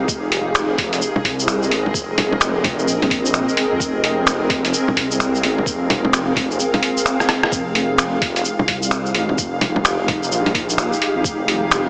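A blurred, granular cloud pad opens the track, holding sustained chords that pump against the sidechain and bloom through its own built-in reverb, while a detuned sawtooth bass with a filter swell and tube saturation growls menacingly beneath it. This is a nocturnal, melancholic slice of future garage at 129 BPM in 4/4, with a 63% swing on the sixteenths, cut from a longer piece. At 0.1 seconds a muffled, pitched-down electronic kick with a thumpy, tape-tinged punch arrives alongside an up-front, sampler-style kit of bongos, finger snaps, hi-hat, rim click and shaker, both set in a small room. The harmony rests on Abadd9/F before a brief drum fill at 7.2 seconds leads into Fm9 at 7.5 seconds. The whole mix sits in a moderate, lush hall reverb yet comes across heavily squeezed, like a small radio speaker.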